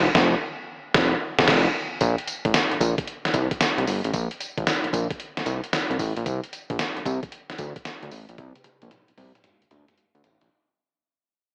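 Bouncy and upbeat, this excerpt of R&B in the new jack swing style moves at 113 BPM in 4/4, with a 66% swing on the sixteenths. A fat analog bass sits up front from the opening, its thick, detuned sawtooth tone marked by a fast attack, sustained notes and a filter sweep, holding to the low register between F1 and D2. The gated 80s digital drum machine enters at 0.1 seconds with a sampler-style kit of thumpy kick, gated-reverb snare, hi-hat, tambourine, toms and crash cymbal, overdriven and re-recorded in a large room, and it sits up front in the mix. The opening two seconds carry a band accent before the music begins to fade out at 2.0 seconds, and a drum fill runs from 8.4 seconds to the end. The whole recording has a light reverb and a narrow, boxy AM radio character.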